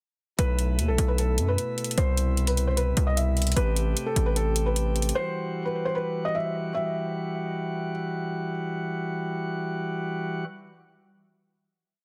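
Menacing and melancholic, this short trap piece in E minor moves at 151 BPM with a half-time feel, its brief run given over to a breakdown that settles onto a final chord. A felt-muted upright piano carries the melody, a soft, mellow, intimate loop repeated like a sample and trailed by delay. Beneath it, a pipe organ on sparkling flute stops holds up-front sustained chords in a light, bright baroque voicing, passing through B7sus4, Cmaj7 and Am7 before landing on Emadd9. A distorted 808-style bass hits hard and saturated with long sub-bass notes and pitch slides, while an electronic hi-hat adds metallic hats and fast rolls to the half-time beat. Both bass and hi-hat drop out around 5 seconds, leaving piano and organ in a small room ambience, and the organ holds on alone until 10.4 seconds under a dense, heavily limited modern master.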